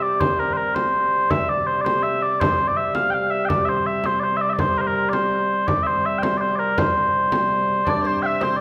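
A wet recital-hall reverb surrounds this short, rustic medieval dance in 6/8, moving at a straight 110 beats per minute in C mixolydian with an ancient air. Mellow, sweet small bagpipes carry the melody up front over a reedy, breathing harmonium drone and a deep, hard-handed frame drum that enters at 0.2 seconds. Near the close, a bright folk-style shawm and a delicate fingerpicked lute with doubled nylon strings join at 7.8 and 7.9 seconds as quieter second lines.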